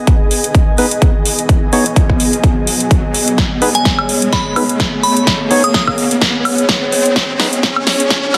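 Bass house build-up at 127 BPM in G# minor, aggressive and gritty, where a dark, detuned analog pad and a background ethereal pad pump under sidechain on a G#m chord, a riser climbs in at 0.5 s alongside a filter sweep, a punchy up-front kick and dance kit with metallic hats, snare and woodblock drive a drum fill from 3.4 s, hollow organ stabs carry 12-bit sampler grit and delay, and a crystalline FM bell melody sounds from 3.7 s to 5.8 s, all under a dense, heavily limited master with plate reverb.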